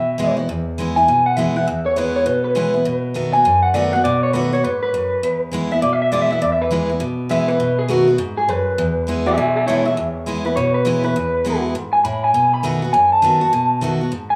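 A swung, fast rock groove at 202 BPM in 4/4 drives this rollicking, retro excerpt in E major, cut from a longer piece and moving between E and B7. A twangy, slightly broken-up electric guitar through a small old amp carries a clean solo melody from 0.5 seconds to the end at 14.4 seconds, coloured by spring reverb and analog delay. Beneath it, a picked jumbo steel-string acoustic guitar with fresh strings gives full-bodied accompaniment with audible finger squeak, both guitars up front in a small room with moderate studio reverb.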